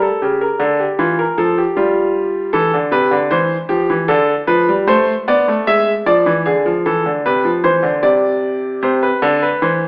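A clear grand piano plays alone from the first second, an up-front, intimate solo in a baroque-style two-part invention whose straight, even feel in four carries an elegant, joyful mood. The audible action noise of the instrument sits inside a wet recital hall reverb, while the whole recording takes on the boxy, narrow colour of AM radio. The harmony moves from A7 through Am and E7 to Cmaj9, settling on C at 8.8 seconds before this fragment of a longer piece breaks off at 9.9 seconds.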